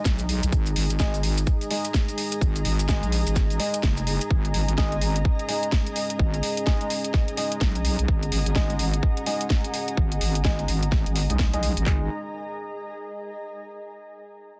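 Aggressive and bouncy, this bass house excerpt at 127 BPM with a swung 16th feel is driven by a heavy, saturated wobble bass with a filter sweep, garage drums with a tight kick, handclaps, cracking snare and hats, grainy maracas until 4.3 seconds, a barely audible downlifter, dark grand piano stabs through dub echo from 1.0 seconds, and a moody detuned analog pad and blurred granular cloud pad pumping beneath a dense, heavily limited master.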